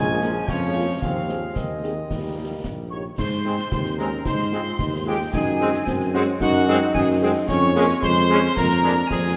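Heard in a wet concert hall with a long reverb tail, this short cut from a proud, spirited military-style march for wind band moves in a straight 2/4. A distant, roomy trumpet section carries the melody over a mellow solo euphonium second line, tight bright trombone chords, a very quiet French horn accompaniment and an up-front tuba bass, with concert snare, bass drum and dark clash cymbals entering at 0.2 seconds. A pure, close-miked small flute group with vibrato adds another second line from 2.9 seconds, just before the music moves into its second section.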